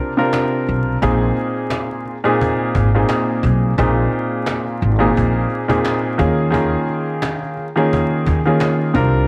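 A dark, mellow grand piano opens this reflective boom-bap hip-hop excerpt in Bb minor, its worn, intimate tone carrying audible action noise and short sustain up front through a C9sus4 break before settling on Bb9sus4 at 1.0 seconds. A soft-handed cajon with faint snares and 12-bit sampler grit sits low and compressed beneath it, while a growly, thumpy pizzicato upright bass enters at 0.7 seconds. At 87 BPM with a light 16th-note swing, the groove moves to Eb9sus4 at 6.2 seconds amid studio reverb and vinyl crackle.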